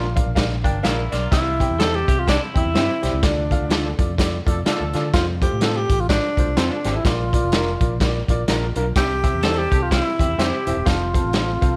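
A breathy tenor saxophone leads from the first moment, its mellow, subtoned melody carrying vibrato and scooped notes in a jazz style over an uptempo, uplifting 1960s-style soul groove at 126 BPM in F major, swung on the eighths. A bright, slightly detuned upright piano with a worn, woody character comps underneath and slips in a fill at 0.4 seconds, while a growly fingered electric bass with tube saturation anchors the low end and a raw garage drum kit, gritty with a punchy kick and rolled-off top, sits up front from 0.2 seconds. An electric guitar through a small old amp adds slightly broken-up stabs in the background, and a clean, twangy electric guitar plays a compressed riff from 0.6 to 3.0 seconds, returning near the close. The band hits an accent starting at 3.2 seconds, and at 4.5 seconds a distant, roomy horn section briefly adds a second line with vibrato. Light reverb surrounds the danceable passage, cut from a longer piece, as it moves through Bb, C, Dm and F, then Bb and C before resolving to F.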